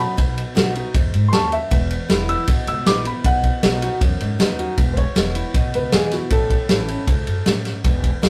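A rough rehearsal-room recording with moderate studio ambience frames this short, upbeat rockabilly excerpt, cut from a longer piece and moving at a straight 157 BPM in E major. A warm, woody upright piano carries the melody from the start, taking a solo through the first 4.8 seconds over chords that move from B to E and back to B, then stops at 7.4 seconds. Underneath, a bright, full-bodied picked steel-string acoustic guitar supplies accompaniment, while a dark, thumpy pizzicato upright bass with gut strings anchors the low end. A vintage drum kit enters at 0.2 seconds and sits up front, with a tight kick, a medium-tuned snare and ride cymbal in a natural studio room sound. After the solo the harmony shifts to E and then A, keeping the retro mood bouncing until the fragment ends.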